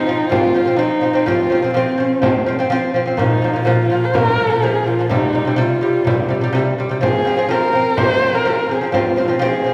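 A husky, bowed horsehead fiddle sings a solemn, windswept Mongolian folk melody with vibrato and gliding portamento over a delicate, fingerpicked gut-string lute's bright arpeggios, both up front, as a small, distant frame drum joins at 0.1 s in the background, at a straight 125 BPM in F minor within a reverberant recital hall heard from further back, in this short cut from a longer piece.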